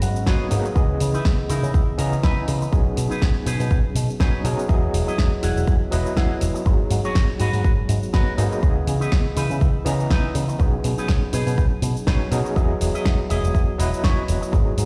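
A 122 BPM nu-disco groove in 4/4 with a light 16th-note swing, built on a punchy, up-front electronic kick that enters at 0.3 seconds and a house kit of finger snaps, bright hi-hat, shaker and snare. A warm picked bass with an envelope filter anchors a sensual, cosmic progression of G#m7, C#m9, B6 and Emaj7, while a barky, gritty overdriven tine electric piano with fast tremolo, sidechain pumping and delay carries the chords, and a twangy, scooped envelope-filtered guitar plays a riff with subtle chorus and delay. A faint swell and a clean guitar fill mark the opening 0.8 seconds of this excerpt, and the whole mix sits in a stone-room ambience, as if played over a big sound system in a bare room.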